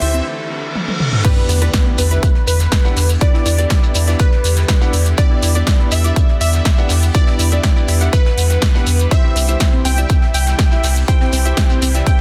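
A short build-up of riser, reverse cymbal and a big-room dance kit with crisp hats and toms over a Dsus2 chord gives way at 1.2 s to a driving, expansive progressive house drop in E minor at 122 BPM, where a punchy electronic kick and deep, round analog bass sit beneath a catchy detuned unison lead with digital delay, the bass pumping against the sidechain, alongside a glassy wavetable pluck sharing the lead's register, a tight sequenced sawtooth arpeggio with 12-bit grit and tape echo, boxy grand piano stabs, a shimmering granular pad, very quiet brushed drums and a grainy shekere, all packed into a dense, heavily limited, fairly dry mix that moves from Em7 to C at 9.1 s.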